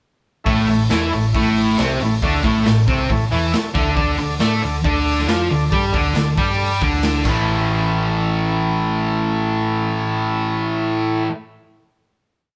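This whole garage rock piece sounds like a duo or trio playing live in one room with light reverb, and the mood is rowdy and swaggering in a straight 4/4. Up front, a double-tracked fuzz guitar hammers out a distorted octave riff from 0.5 seconds, doubled by a round, amped hollow-body short-scale bass that drives along in eighth notes with a touch of overdrive. A vintage combo organ sits lower in the mix, holding clean, buzzy triad chords in an eighth-note rhythm. The raw acoustic drum kit brings a punchy kick, a medium-tuned snare and dark cymbals in a gritty, pumping small room, while a jingly tambourine stays close and dry in the background. The riff moves from A to D5 and back to A, and at 7.5 seconds the band lands on a final hit whose guitar, bass and organ ring out until about 11.3 seconds.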